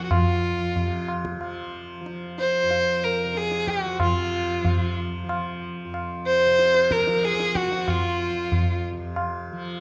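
A straight three-beat pulse carries this solemn, meditative passage of Hindustani classical music in raga bhairavi, cut from a longer piece. A single bowed violin sits up front with a smooth, vibrato-rich melody, while a bright, buzzing tanpura drone shimmers beneath and a high-tuned, ringing tabla plays close by from 0.1 seconds. The violin falls silent at 8.9 seconds, leaving the tabla to sound on until 9.4 seconds and the drone to continue in a moderate concert-hall reverb until 9.8 seconds.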